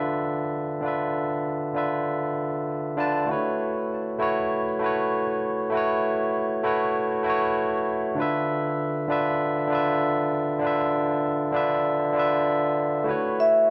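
A barky, lightly overdriven tine electric piano with tape echo opens this relaxed, smooth chillout piece at 98 BPM in A major, swinging gently on the sixteenths as it moves between Dm6 and A69 up front in a dark, warm mix bathed in a wet plate reverb, before a mellow, metallic vibraphone with soft mallets rings out a single note at 13.4 s as the cut ends.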